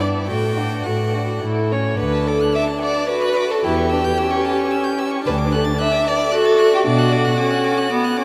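This is a quick classical-period movement for string quartet, cut from a longer piece, in D major at 111 BPM in 3/4 with a graceful, lively character and a rubato feel, tuned to A4 = 438 Hz. The first violin carries the melody high up, from F#5 to A6, with a bright, focused tone and vibrato, though it sits lower in the balance than the rich, up-front second violin singing its line between F#4 and E5. The viola fills in the accompaniment from B3 to F#4, its vibrato-laden tone focused but heard from a distance. The cello, bowed with a smooth, even sound and placed up front, holds the bass between D2 and B2 until it stops at 7.3 s, while the upper three parts carry on to 8.2 s. A brief opening phrase gives way to a new section at 2.0 s, and the harmony moves from D through A7 back to D before settling on B minor. The quartet is bathed in a huge, wet reverb lasting 7.4 seconds, which places the players in a vast, echoing space.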